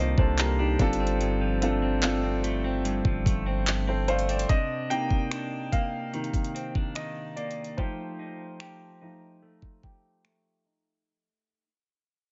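Contemporary R&B at 73 BPM in C dorian with a moody, late-night air, built on a warm grand piano whose chords carry Cm9, G9sus4 and F9 and take a solo from 4.5 s, while a dark, clean, picked electric guitar plays arpeggios through tape echo, a deep, mellow sine 808-style bass sustains low until 4.5 s, and an up-front electronic kit of finger snaps, handclaps, metallic hi-hat and knocking kick drives a dry, dusky mix as a filter sweep and fade-out run from 4.5 to 11.1 s.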